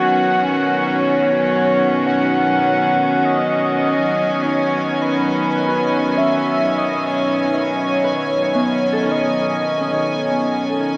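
A slow, straight 51 BPM pulse in 4/4 carries this luminous, weightless ambient excerpt resting on a Badd9 chord, where an up-front, clear studio string section holds pure, floating bowed chords, a fingerpicked Celtic harp rings out arpeggios, and a velvety, detuned synth lead with vibrato sings the melody, all three parts bathed in shimmer reverb, with analog delay on the lead and harp, inside a dreamy, heavily reverberant mix that has a small-speaker sound.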